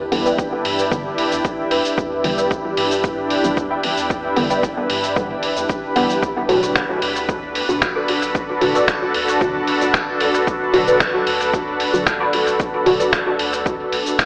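A dreamy, reverb-soaked mix with an AM radio tint frames this hypnotic, deep dub techno excerpt, where an up-front granular cloud pad holds blurred, evolving chords above a round, soft sub bass in the background, both pumping with the sidechain. Two filtered dub chord stabs thread through dub echo: one is dark and phased and plays stabs, and the other is a nasal, resonant, mellow riff with ensemble chorus. Beneath them, a punchy, tape-warm electronic kick sits alongside a muffled, overdriven sampler-style kit of finger snaps, hi-hat and shaker, as the harmony moves from Em7 to Bm7 at 6.2 seconds.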